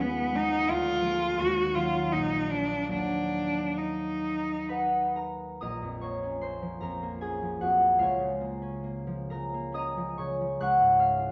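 Melancholic and yearning, this romantic classical duo for cello and harp moves in a rubato 3/4 at 62-87 BPM, starting in E-flat minor before shifting to B-flat minor at 5.6 seconds. The bowed cello sings a rich, focused melody with vibrato over ringing, fingerpicked concert harp accompaniment, then falls silent at 5.2 seconds so the bright harp carries on alone until 11.3 seconds. A moderate recital hall reverb and a dark, warm production frame this brief extract from a longer piece.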